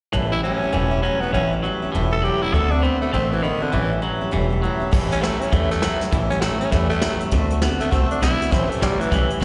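A swung 4/4 shuffle at 200 BPM drives this rowdy, retro rockabilly excerpt in A mixolydian, with a woody, thumpy upright bass up front, a picked dreadnought acoustic guitar playing accompaniment and a twangy, compressed electric guitar riff, both guitars carrying slapback echo over A7 and D7 changes. A raspy, growling tenor saxophone leads the melody from 0.3 seconds with light vibrato, slapback and tape echo, and a soft brush drum kit with dark cymbals and a punchy kick joins at 4.9 seconds. The whole performance comes across as a live gig heard through a venue's PA, with recital hall reverb and a dulled top end.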